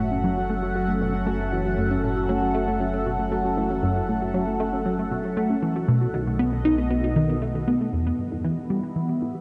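Drenched in a vast, echoing reverb with cassette-tape grain, this mysterious, expansive fragment of ambient, sequencer-driven space music moves at 117 BPM over F#m7, B7 and Em, where a swirling, nasal analog pad with phaser and chorus sits up front, a tight, driving detuned sawtooth sequence riffs through phaser and delay, a soft, round pluck arpeggiates in the background with 12-bit sampler grit, delay and a filter sweep, a deep, round analog bass anchors the low end, and a bubbling, resonant stepped-filter texture drifts behind until it stops at 7.9 seconds.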